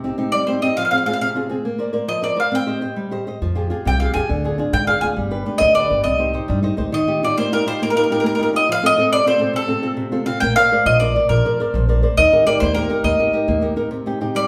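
A large, wet studio reverb surrounds a band playing live in one room, in this lively, romantic Italian folk serenade at 137 BPM in a straight 6/8. Up front, a bright mandolin with doubled strings picks out the melody from 0.3 s over a fingerpicked flamenco guitar's warm accompaniment, while a thumpy, woody pizzicato upright bass on gut strings enters at 3.4 s and plays in stretches. A nylon-string guitar fill at 6.5 s leads the music from C minor into Eb major, where Ebadd9, F and Bbadd9 chords carry this cut from a longer piece back toward C minor.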